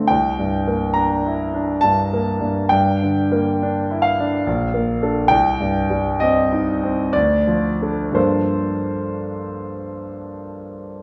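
Wistful and mysterious, this short cut from a longer impressionist solo piano piece in G minor drifts in a rubato 3/4 at roughly 56-72 BPM, its clear, up-front concert grand ranging from Bb1 to Bb5 with deep bass and long sustain as it moves through colours such as C13, Bbmaj7 and a closing Gm11, all set in a moderate concert hall reverb.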